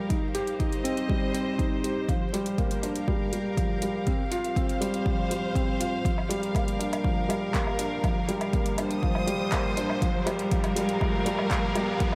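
Piano and strings electronica with a cinematic, melancholic mood, this build-up cut from a longer piece puts a felt-muted upright piano riff up front, soft and intimate with audible action noise and tape echo, over lush, bowed string-section chords with vibrato, while a punchy electronic kick and a deep house kit of handclaps, metallic hi-hats and woodblock, both overdriven and set in studio reverb, play alongside, and a background riser enters at 8.9 seconds.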